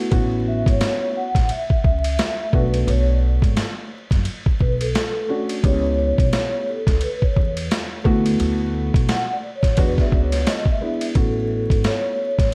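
Cool and smooth, this jazz-hop cut from a longer hip hop piece moves at 87 BPM in 4/4 with a swung sixteenth-note feel in A major. A sampler-style boom bap drum kit sits up front, gritty and compressed, with a thumpy kick, a high-tuned snare, hi-hat and ride cymbal, re-recorded in a large room. Beneath it, a woody pizzicato upright bass with steel strings anchors the low end, while a dark, boxy concert grand piano supplies mellow accompaniment in its middle register. A vibraphone played with soft mallets carries the melody from 0.5 seconds, its ringing metallic tone shaded by fast motor vibrato and a tape echo, taking a solo through to 11.2 seconds. The harmony drifts through rich chords such as A69, Bm7, D6 and E9 before returning to A69 as a brief new section opens at 11.2 seconds, all set in a small room ambience with a bed of vinyl crackle.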